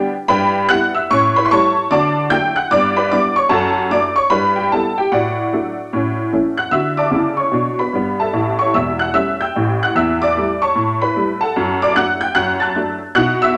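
A jangly, detuned honky-tonk upright piano sits up front in a moderately large studio space, its short-sustained notes carrying a bright, vintage bite with an open ring. This is exuberant stride piano jazz in D major, swinging at 149 BPM in 4/4 with a moderate swing on the eighth notes. The lone piano covers a huge span, from a deep E1 up to a sparkling A6, and plays solo from start to finish across this 13.6-second cut from a longer piece. The opening passage moves quickly through changes such as Em/G, A7, D, G and D/F#, settling on A by 5.9 seconds. At 6.7 seconds a new section begins, and the harmony slows to longer stretches on D, A7 and A7/E before landing on D/F# near the close.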